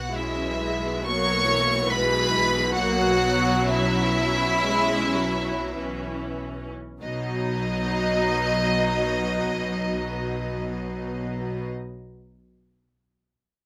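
An intimate chamber violin section carries the melody up front with light vibrato and a soft sul tasto touch in this serene, slow romantic classical excerpt for string orchestra in B major, moving with rubato at 45-73 BPM and slowing through the first 7.0 s over an F#7/B harmony before settling on B. Beneath it sit a pure, floating second violin line, a dark, woody viola accompaniment, and distant cello and double bass sections on the bass, all in a moderate studio reverb.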